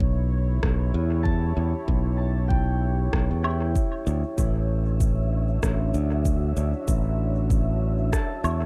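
This ambient dub excerpt opens with a deep, moody pad holding sustained chords from Em6 to Dmaj9, above which a thumb-plucked Celtic harp rings out arpeggios through tape echo, while a bright, growly fingered electric bass sits up front at 96 BPM with a 16th-note swing. A layered electronic kick anchors the groove, joined at 0.6 s by an overdriven rim click, woodblock and shaker soaked in dub echo and re-recorded in a large room. At 4.2 s a breathy, wind-like tuned noise texture drifts in the background, deepening the dark, spacious mood of this echo-heavy mix.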